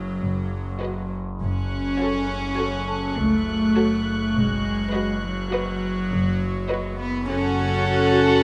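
A tense, ominous suspense-score excerpt in 5/4 opens with softly bowed, sul tasto strings moving between B/F# and F#m: a pure, floating violin melody in the background, a second violin line, an intimate viola part and an up-front cello bass, over a nasal, resonant drone with chorus and moving overtones and a delicate, bell-like celesta, with a rich double bass section joining at 0.2 seconds, a high violin texture with light vibrato hovering from 1.4 to 6.9 seconds, and a moderate scoring-stage reverb around the ensemble.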